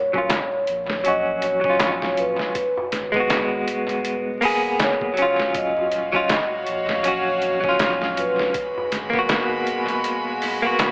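A clean, picked electric guitar sits up front in this hypnotic, brooding trip hop excerpt, its compressed tone shaded by tremolo, a low-pass filter and tape echo as it carries the accompaniment over Ebm9 and Abm7 chords in Eb minor. Above it, a close-miked vibraphone with medium mallets plays a short, ringing melody with slow motor vibrato and tape echo, stopping at 8.9 seconds. The groove moves at 80 BPM in 4/4 with a swung 16th feel, driven by a gritty, pitched-down sampler-style kit with a thumpy kick and medium-tuned snare, while a very quiet, distant metal-shell darbuka adds crisp, deep percussion and a round sine sub bass stays in the background. At 5.5 seconds a chamber violin section enters with rich, reedy sustained chords, their gut-string period tone and light vibrato roughened by vintage 12-bit sampler grit. The whole mix is echo-heavy, steeped in moderate spring reverb, vinyl crackle and an AM radio sound.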